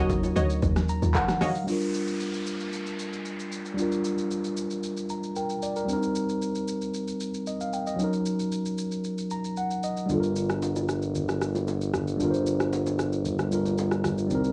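A home cassette recording with light small-room reverb, this hypnotic, deep amapiano excerpt at 114 BPM in G minor opens on a drop where a punchy, warbling sawtooth chord stab with chorus and phaser and a woody, percussive log drum bass sit over a worn, slightly out-of-tune tine electric piano, which plays fills and carries a filter sweep from 1.7 seconds. An overdriven deep house drum kit with a punchy kick, fat snare and smooth hats drives the groove throughout, acoustic bongos and congas linger in the background at the start and return from 10.1 seconds, and an electronic downlifter passes through as the chords move through Gm7, Cm7 and Ebm7. From 10.1 seconds, an up-front, jazz-style tuba with light vibrato and a soft attack takes a solo over Gm7.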